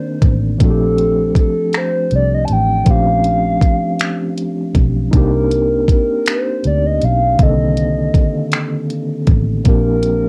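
A hollow, woody clarinet-like synth lead with chorus, phaser and vibrato carries the yearning, sultry melody of this slow 6/8 R&B excerpt in C dorian at 53 BPM, over a barky, lightly overdriven tine electric piano with fast tremolo, a dark, round, foam-muted fingered electric bass and an electronic drum kit of finger snaps, hi-hat and a knocking kick that join at 0.2 seconds, as the harmony moves between Cm9 and Bbmaj13 in a home cassette recording with light reverb.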